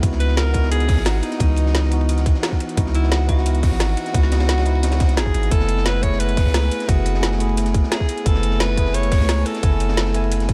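A rolling, straight 4/4 groove drives this soulful liquid drum and bass excerpt. A tight, layered electronic kick sits beside a drum and bass kit with a woody snare and metallic hats, while a crunchy breakbeat kit with dark cymbals, a high-tuned snare and gritty saturation stays in the background, its cymbals, hats, snare and room high-passed. Underneath, a deep, sine-toned 808-style bass sits up front with long, decaying notes, and a clean tine electric piano, heard through a combo amp, carries the accompaniment over the C#m11 to F#m11 change at 5.5 seconds. A very quiet, ethereal FM pad adds glassy sustained chords with ensemble chorus and a long release. From 0.2 seconds a bright alto saxophone takes the solo melody in a pop style, with light vibrato and a dub echo trailing its phrases. Light reverb and a small room ambience give the production a dark, warm finish.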